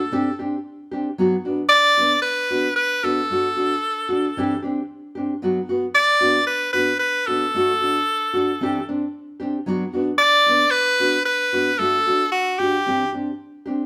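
A joyful, danceable highlife fragment at 113 BPM opens with an edgy tenor saxophone and a fingerpicked nylon-string guitar together, both up front in a live band sound captured in one room. The punchy, forceful saxophone carries a pop-style solo melody with vibrato, while the classical-style acoustic guitar supplies warm accompaniment around a Csus2, Bm/F#, D and Cadd9 cycle. A moderate stone-room reverb surrounds the pair until the saxophone stops at 13.1 seconds and the guitar at 13.8 seconds.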